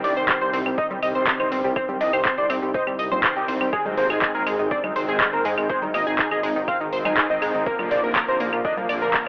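A lo-fi, telephone-thin haze hangs over this short cut from a longer melodic techno track, as if captured on a home cassette and set in a moderate, lush hall reverb. At 122 BPM in C minor, the driving, cinematic passage moves from Cm to Ab at 3.7 seconds and Bb at 7.7 seconds. Up front, a thick, bold unison lead carries the melody with vibrato, sidechain pumping and analog delay, beside an overdriven analog drum machine of claves, congas, handclaps, hi-hat and shaker. A layered electronic kick joins at 0.3 seconds alongside a deep, rumbling detuned saw bass shaped by sidechain pumping. In the background, a tight sequenced synth with a filter pluck spins chorused, taped arpeggios, while a brassy analog pad punctuates with evolving stabs roughened by 12-bit sampler grit. A very quiet, moody ambient pad sustains dark chords, and from 2.1 seconds a barely audible swarming drone adds a tense, warbling granular texture.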